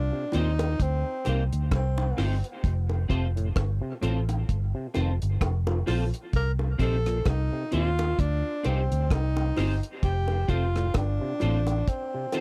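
A breathy tenor saxophone and a dark, foam-muted fingered electric bass open this meditative, spacious dub reggae cut at 65 BPM in C dorian, the sax whispering an intimate, vibrato-laden melody drenched in dub echo over chords moving between Cm and F. Within 0.3 s a clean, picked electric guitar with ensemble chorus, tight high-tuned bongos struck with hard hands, and a deep, dry reggae kit with a tight kick, hi-hat and rim click settle into a swung sixteenth-note feel, while an overdriven auto-wah clav spins stringy, mellow arpeggios through a combo amp in the background. The bass drops out at 11.8 s, and the close, dry 1970s-style studio sound keeps the round bass, drums and sax up front in this fragment cut from a longer piece.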